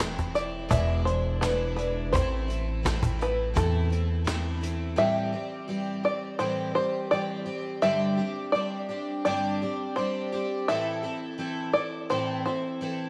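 This is an acoustic folk piece for a small band, cut from a longer work, with a wistful, melancholic mood in a straight, unhurried 4/4. A picked twelve-string acoustic guitar plays the accompaniment up front throughout, its bright, octave-doubled shimmer thickened by a lush chorus, while an open-back banjo enters at 0.4 seconds to carry the melody with a mellow, plunky twang. In the opening stretch, an up-front upright bass gives thumpy, woody pizzicato on gut strings, a close, dry cajon adds soft-handed taps with faint snares, and a distant, roomy unplugged drum kit sits in the background with bundle sticks on hi-hat, punchy kick and a medium-tuned snare. Bass, cajon and drums all drop out by 5.0 seconds, leaving guitar and banjo to carry the second section over a gentle move through Am7 and Gsus4 back to Am. A moderate plate reverb gives the recording a soft sense of space.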